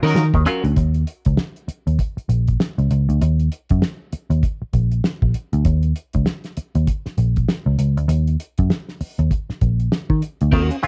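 A dark, round picked electric bass with a foam-muted, punchy tone sits up front through this short funk cut, holding the low end from start to finish across its roughly 10.9 seconds. Beside it, a cloth-damped acoustic drum kit gives a thuddy, dry groove of fat snare, tight kick, hi-hat and dark crash, its rolled-off top adding to a hypnotic and sly mood at 98 BPM in Eb minor, with a 16th-note swing. A slightly broken-up, compressed electric guitar and a muted, stringy clav through auto-wah and a combo amp appear only in brief flashes, at the opening and again at 10.5 seconds, with the clav landing as short percussive stabs. The harmony moves from Ebm7 to an Eb7 color at 0.8 seconds and stays there for the body of the passage. Small room ambience, cassette saturation on the drums, guitar and clav, and a faint mains hum give it the feel of a home recording, heard here as a fragment of a longer piece.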